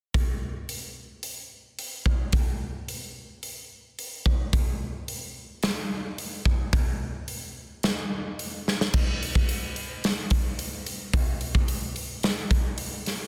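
A big acoustic rock drum kit opens the recording at 0.1 s, sitting up front in a big room with a light touch of reverb. Played in 4/4 at 109 BPM with a straight feel, the kit carries a bittersweet, cathartic mood through crash cymbal, hi-hat, punchy kick and a medium-tuned snare, with the cymbals ringing bright. A drum fill at 8.7 s leads into a new section beginning at 8.9 s. The kit plays on until 13.2 s, and the short clip is cut from a longer piece. The drums come through a dense, heavily limited modern master.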